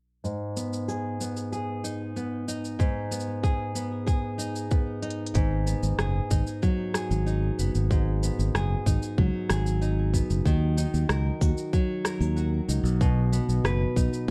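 A dark, lightly reverberant production frames this delicate, autumnal folktronica excerpt in straight four. From the opening, a full-bodied, fingerpicked nylon-string guitar sits up front with deep classical tone, its arpeggios roughened by vintage 12-bit sampler grit and shaped by a low-pass filter, digital delay and plate reverb, with a filter sweep through the first section. Alongside it, an organic electronic drum kit of smooth hi-hat, rim click and shaker keeps a soft, tape-warm pulse in small room ambience, and a tight electronic kick joins at 2.8 seconds. A drum fill at 5.0 seconds leads into the second section, where a fingered electric bass enters at 5.4 seconds, bright, growly and punchy with a direct, amped sound. The harmony moves from G#m to G#m7, then settles on D#m and B as the piece continues beyond the cut.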